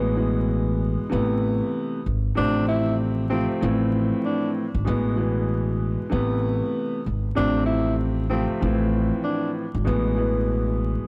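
A swung boom-bap groove at 96 BPM in 4/4 sets a moody, dark tone for this short cut from a longer hip-hop piece, sitting in A harmonic minor. A dark baby grand piano and a pizzicato upright bass both play from the start, the piano mellow and smooth with long sustain and a vintage cassette-tape coloring, the bass woody, thumpy and up front on gut strings. At 2.4 seconds a breathy tenor saxophone enters with a jazz-style solo line, its subtone, vibrato and scooped notes softened by filtering and an analog delay, before it stops at 9.5 seconds. The harmony cycles through E/A, Amadd9, F/A and Dm9, giving the loop a brooding pull. The whole mix is dry and gritty, with transformer saturation, vinyl crackle, light reverb and a small room ambience.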